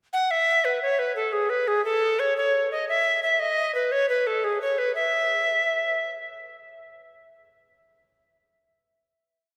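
Lilting in 9/8 at 116 dotted-quarter beats per minute with a straight feel, this short, complete Celtic folk piece in E major sounds lively and cheerful. A lone alto recorder carries it from 0.1 to 6.1 seconds, entering within a brief pickup, and spins a motif-based melody in balanced period phrases between G#4 and F#5. Its woody, airy tone is marked by a soft, breathy chiff at each attack and gentle vibrato. Set up front yet bathed in the long, wet reverb of a church, the recorder's final note gives way to a closing hit at 6.5 seconds that rings on in the resonant space until 8.0 seconds.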